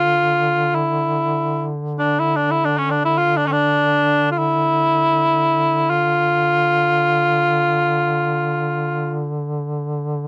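Caucasian folk lament in free time, this brief passage carries a longing, solemn mood. A mellow cor anglais sings the melody up front in a classical style, its light vibrato shaping a narrow line between C#4 and F4 before it falls silent at 9.3 seconds. Beneath it, a duduk holds a low drone on D3 with a warm glow, its vibrato and scooped notes giving the foundation a folk character. The duduk sits well behind the cor anglais in the balance and sustains alone until the close at 10.3 seconds. The sound is dry and close, with little reverb, in the manner of a 1970s studio recording, and the passage is cut from a longer piece.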